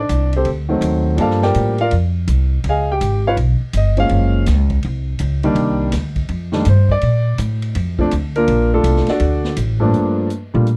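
Jazz piano trio at a brisk 164 BPM in Bb major, swinging and sophisticated, caught in a short cut from a longer piece. An up-front grand piano carries the melody as a solo across the first 9.9 seconds over lush changes such as Gm9, Db9 and Gbmaj9, while a woody pizzicato upright bass sits close beside it and a vintage drum kit with punchy kick, ride, hi-hat and a rolled-off top stays further back. The sound is a dry, close studio recording in a 1970s style.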